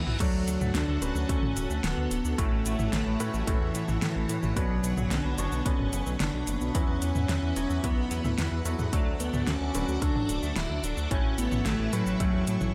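A drum fill opens this nostalgic, uplifting synthwave excerpt in D major at 110 BPM, as a velvety sawtooth lead with chorus, tape character and delay carries the melody over a lush string machine with phaser and a thick, detuned saw bass, both pumping to the sidechain. A punchy electronic kick and a pop kit with a fat snare, metallic hats, cabasa, crash and toms drive the straight 4/4 groove, while a clear grand piano adds delayed stabs and a very quiet, twangy, slightly broken-up electric guitar plays a riff. An airy, dreamy second lead with vibrato sits in the background as the chords move from D through A6, Bmadd9 and Esus2, all under light reverb.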